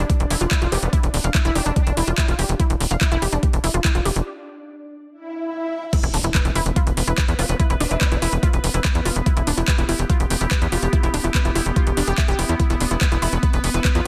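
Psychedelic trance at 144 BPM in E phrygian, this intense, psychedelic passage is cut from a longer piece and runs on a straight 4/4 drive. A knocking, overdriven electronic kick sits up front alongside a tight, nasal sequencer bass with a punchy filter-pluck attack, while a layered garage kit adds metallic hi-hats, handclaps and crash cymbal with its own overdrive. A lush, detuned unison pluck carries the riff through sidechain pumping and tape echo, and behind it a bright, pulsing gated texture holds sustained chords with chorus and built-in reverb. A resonant vowel-sweep wobble bass surfaces in the background as a second line from 0.7 to 2.1 seconds and again near 7.4 seconds. After a break at 4.3 seconds, a swell and impact in the background lead into the drop at 5.9 seconds, all set in a digital ambience with a dense, heavily limited modern master.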